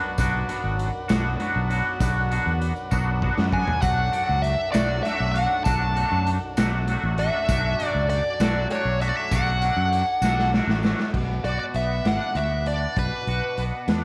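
A dark, fuzzed-out lead guitar enters at 3.5 seconds and sits up front, its distorted, compressed line colored by wah and slapback echo and riding high over this trippy, mysterious psychedelic rock passage in 6/8. Beneath it, a double-tracked, twangy electric guitar plays a clean, picked riff through harmonic tremolo, while a vintage combo organ hangs back with buzzy, overdriven sustained chords drenched in heavy vibrato. A fingered electric bass, direct and amped, holds the low end prominently. A raw garage drum kit with a punchy kick, medium-tuned snare and rolled-off top adds fills along the way, and a jingly tambourine rattles close and dry in the background. A very quiet, organ-like sine drone with slow attack and ensemble chorus hums underneath as the harmony moves from B minor to D, then returns to B minor when a new section begins at 11.1 seconds, all in a small room with light reverb, cut from a longer piece.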